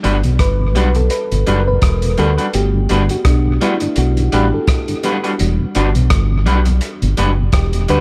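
This tender, sweet lovers rock reggae excerpt opens with the full band at once: a mellow FM electric piano takes the solo from the first moment, its soft, warbling, vintage tone carrying a faint noise layer and a shimmer of chorus. Beneath it sits a very quiet, dark tonewheel organ with a slow rotary speaker and chorus vibrato. An electric guitar through a small old amp adds picked stabs, slightly broken-up and bathed in lush chorus. The fingered electric bass is round and punchy, sitting up front in the mix, while a crunchy breakbeat drum kit of kick, hi-hat and rim click sounds gritty and saturated, with a tight kick and a rolled-off top. The relaxed swung groove moves from Em9 to Gmaj7 at 2.5 seconds and back to Em9 at 5.4 seconds, all inside a small room ambience.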